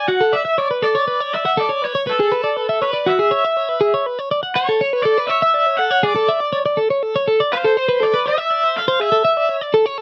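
A raw garage guitar carries the melody with an overdriven, picked bite, colored by tremolo and slapback echo, before falling silent at 9.5 seconds. Beneath it, a clean, compressed twelve-string electric guitar rings out chiming arpeggios through the whole passage, over changes such as Dmaj9, C#m7 and Fmaj7 (rootless) on the way to Amaj7. This playful, bright rock excerpt moves in a straight 6/8 at 81 BPM in D lydian, and it has the dry, close sound of a 1970s-style studio with a touch of light reverb.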